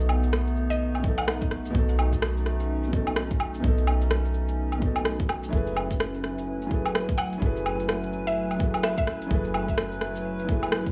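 A light, small-room reverb gives this short future garage excerpt a close, rainy, nocturnal atmosphere. A felt-muted upright piano plays soft accompaniment with audible action noise and a short sustain, while a warbling, detuned tape-like pad holds nostalgic chords through chorus and its own reverb, both breathing with sidechain pumping over a B7 that moves to F#m11. Underneath, a round, sine-like 808-style bass adds a dark, decaying low end that pumps along with them. An overdriven, up-front kit of electronic shaker, cabasa, woodblock and rim click drives the swung groove, joined at 1.0 seconds by a deep, overdriven electronic kick. A woody, mallet-like synth pluck with a bright FM edge and tape echo places brief melodic phrases near the top, first at 0.7 seconds and again from 7.2 seconds.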